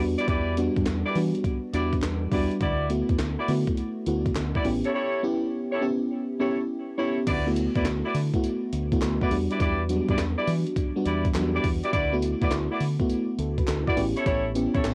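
A lush, chorused FM electric piano with a soft pad layer carries the harmony in this bouncy, upbeat new jack swing R&B excerpt at 103 BPM in D major with swung sixteenths, moving through Em7, D69 and A7 over a dark, round fingered dub bass, mellow vintage horn stabs carrying tape echo and light vibrato, a gritty, compressed breakbeat sampler kit with thumpy kick, high-tuned snare, hi-hat, tambourine, handclaps and crash, and very quiet, crisp group handclaps entering at 0.9 s, all heard in a lightly reverberant cassette home recording.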